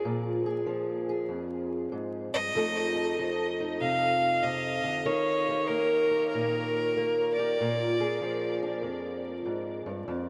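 Soulful and gritty, this short cut from a longer acoustic country blues moves at 96 BPM in a swung 4/4 in Bb mixolydian, where a dark, boxy fingerpicked ladder-braced guitar plays through Bb7, F7 and Eb7 chords beneath a rich, focused bowed fiddle melody with light vibrato and a diffuse ambient delay that enters at 2.3 seconds and stops at 8.6 seconds, both kept up front in a dreamy mix soaked in huge reverb and flecked with vinyl crackle.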